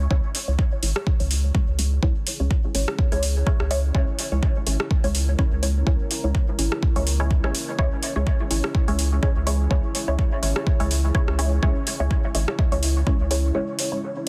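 An overdriven, up-front electronic kick drives this meditative, hypnotic dub techno cut at 125 BPM in C# dorian, joined by a gritty house kit of metallic hi-hats and rim clicks with a light swing on the 16ths. A round, sine-and-square analog bass pumps beneath it, while muted, detuned sawtooth chord stabs with short filter plucks drift through phaser and dub echo over a lone C#m chord. From 1.4 seconds a moody, warbling vintage pad with chorus and its own reverb sits in the background, and the bass drops out at 13.5 seconds for a brief break in this dense, heavily limited, dry mix taken from a longer piece.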